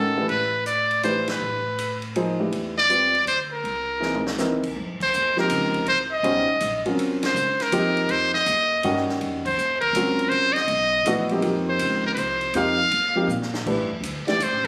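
Modal jazz at 162 BPM in a swinging 3/4, intense and spiritual in mood, this excerpt from a longer piece puts a metal-muted trumpet up front with a buzzy, brilliant tone, vibrato and scooped notes, over a concert grand piano with deep bass and short sustain, a woody pizzicato upright bass, and a big-band drum kit with punchy kick and medium-tuned snare that enters at 0.3 seconds. The harmony moves from Am11 through C7alt to a long stretch of F9sus4, with band accents and drum fills marking the phrases before the trumpet takes a brief solo at 13.7 seconds as Am11 returns. The sound has the roomy, natural feel of a club caught on a phone, with moderate reverb.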